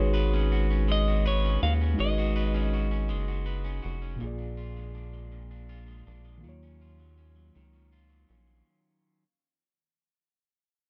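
A rubbery, hollow square-wave bass sits dark and up front, its bouncy filter pluck anchoring this yearning, sultry slow R&B fragment in six-eight, cut from a longer piece and fading out across its length. A mellow tine electric piano supplies clean, direct accompaniment over chords moving from Abm7 through Bb7 to Ebm9, while a fingered electric guitar at the edge of break-up adds a twangy second line. A picked, clean electric guitar carries a brief melody from 0.9 to 3.8 seconds, all set in a digital ambience.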